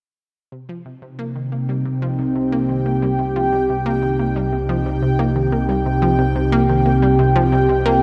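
A straight 4/4 pulse at 90 BPM carries this mysterious, expansive stretch of sequencer-driven ambient space music in C minor, resting on a single Cm chord. From 0.5 s, an up-front, detuned sawtooth pad with a resonant filter sweep holds sustained chords while a round, fast-attack analog pluck fades in with a tape-echoed riff. At 2.1 s a bubbling texture of random filter steps fades in high above, and at 2.2 s a warbling, vintage pulse-width drone fades in on a low C, with chorus on every part and the whole bathed in a vast cathedral reverb that lingers for 6.2 seconds.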